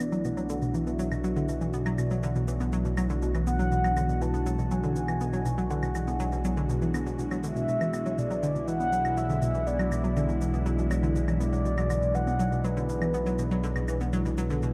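A straight 4/4 pulse drives this mysterious, hypnotic stretch of sequencer-driven ambient space music, where a detuned, ring-modulated analog pluck riff with chorus and tape echo, a fat, saturated analog bass held up front on a single low note, and overdriven electronic cabasa and claves sitting low in the mix support a swirling phased pad of sustained chords beneath a mellow, horn-like synth lead with soft attack and vibrato, all bathed in a wet cathedral reverb with the hazy grain of cassette tape over a single minor chord for 14.7 seconds.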